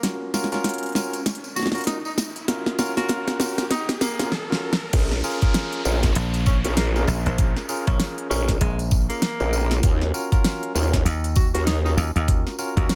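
Playful and funky, this glitch hop fragment opens with a vibrato-laced jazz tenor saxophone solo and bell-like electric piano stabs, both trailed by dub echo, over a fat-snared, crisp-hatted pop kit, jingly tambourine and a background riser, until the drop at 4.9 seconds brings in a knocking electronic kick and a growling, wobbling, saturated bass, joined at 6.2 seconds by a punchy, foam-muted thumbed slap bass.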